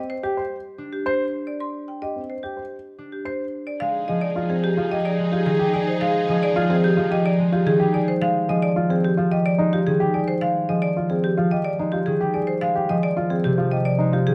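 A ringing, up-front concert harp and a dark baby grand piano playing mellow arpeggios open this hypnotic, meditative minimalist classical excerpt, joined almost at once by a woody, bright marimba melody struck with hard mallets, while from 3.8 to 8.0 s a soft-attack clarinet in the background adds a second line and a lush, bowed violin section with vibrato holds sustained chords, all set in a moderate large-studio reverb.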